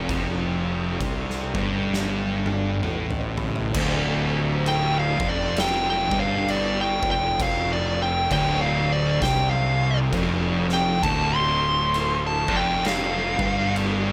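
Two thick fuzz guitars, one warm and one dark, grind out a low riff in D minor beside a round, punchy overdriven fingered bass, opening this brooding, sludgy stoner and doom metal excerpt at a slow 66 BPM with a swung 4/4 feel. An oversized, low-tuned acoustic kit with a boomy kick and medium-tuned snare sounds saturated and gritty in a big, pumping room, playing a fill from 1.9 to 3.7 seconds. At 4.7 seconds a compressed, distorted lead guitar steps up front with a high solo melody trailed by digital delay, all within light reverb and small room ambience.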